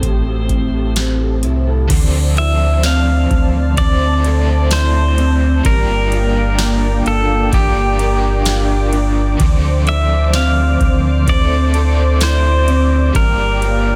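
A booming analog drum machine sets a slow, straight 64 BPM pulse in 4/4, its deep kick, crisp snare, metallic hats, ride, crash and tambourine sounding as if re-recorded in a small room, while a full, up-front sine sub bass with an octave anchors this melancholic, haunting dream pop excerpt in D minor. Over a smooth, detuned sawtooth pad with chorus and a dark, slightly broken-up fingered electric guitar playing arpeggios through ensemble chorus and delay, a clean pedal steel guitar carries the melody with slide and delay. At 1.9 s a double-tracked, overdriven picked guitar joins with tremolo and lush chorus as the harmony moves between Dm9 and Gm7 under light reverb and a dense, heavily limited master.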